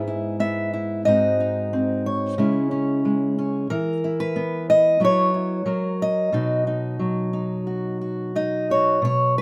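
A lightly reverberant, up-front sound frames a lone fingerpicked steel-string acoustic guitar, its dark auditorium tone carrying audible finger squeaks. This peaceful, pastoral folk fragment, cut from a longer piece, moves at 91 BPM in a straight 4/4 in B major. The guitar ranges from G#2 to E5 through a chord sequence running E/G#, G#7, C#m and E5, then an F#7sus4 resolving to F# before settling on B at 6.3 seconds.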